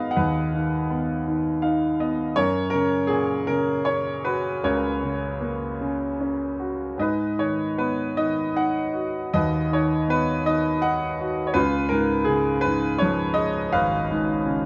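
Warm and peaceful, this lyrical classical piece for solo piano unfolds in a gentle 6/8 with a supple rubato feel. A concert grand carries the music alone for the whole fragment, its tone clear and open, with a deep bass and a close, up-front presence spanning G#1 to F#5. A brief piano fill between 1.3 and 2.4 seconds leads into the first change of harmony. The chords move from G#m7 to F#, return to G#m7, and settle on C#7 near 11.6 seconds, leaving the phrase suspended as if the piece continues beyond the cut. Light reverb and a dark, warm production give the instrument a soft halo.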